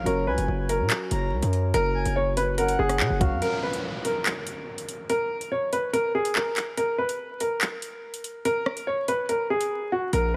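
Tense and menacing, this half-time drill hip hop excerpt opens with a vintage-toned grand piano melody over a breathy flute-like synth lead, mellow electric-piano-like synth keys, ethereal glass harmonica chords, a heavily distorted 808-style bass and a drill kit of knocking kick, metallic hi-hats, handclaps and rim clicks, then breaks down at 3.4 s to piano, drums and an electronic downlifter before the 808 hits again at 10.1 s, all under vinyl crackle and light reverb.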